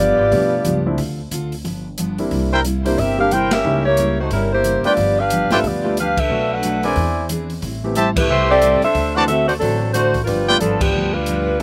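Big band swing with an energetic, joyful lift, this brief cut from a longer piece rides a loping swung feel in 4/4. A mellow, tightly blended saxophone section carries the melody up front with light vibrato, a smooth top and a slapback echo. A picked jumbo steel-string acoustic guitar with fresh strings, full body and a touch of finger squeak joins a woody pizzicato upright bass from the start. A concert grand piano, natural and deep in the bass, and an open jazz kit with dark cymbals, a medium-tuned snare and a boomy kick come in at 0.3 seconds. A present, tight trumpet section in warm jazz style punches a short stab at 2.5 seconds and returns at 4.8 seconds with its own slapback echo, while the full band hits recurring accents over changes that pass through dominant, diminished and augmented chords. The sound is dry and open-air, with barely any reverb.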